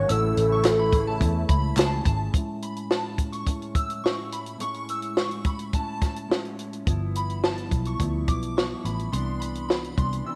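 Lightly reverberant and soft-focused, this short cut of laid-back, nostalgic indie and bedroom pop moves at 106 BPM in a straight 4/4, with chords gliding from Amaj7 to G13 and Cmaj9. A warbling lead built from detuned square and sawtooth tones carries the melody with tremolo, vibrato, lush chorus and slapback echo, but it sings only briefly before dropping out at 1.8 seconds. Underneath, a smooth analog pad holds sustained chords in the background and a round, foam-muted picked bass sits up front; both fall away at 2.3 seconds, when the second section begins, and the bass returns at 6.9 seconds. A dark, fingered electric guitar accompanies throughout, its clean tone colored by lush chorus, a wavering pitch drift, a low-pass filter and a filter sweep through the second section. Above it all, a shimmering FM bell traces a dreamy second line with a long decaying halo of ensemble chorus and slapback echo. 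A dry, compact acoustic drum kit with a high-tuned snare, tight kick and hi-hat keeps time up front, joined early on by a very quiet, hollow group handclap.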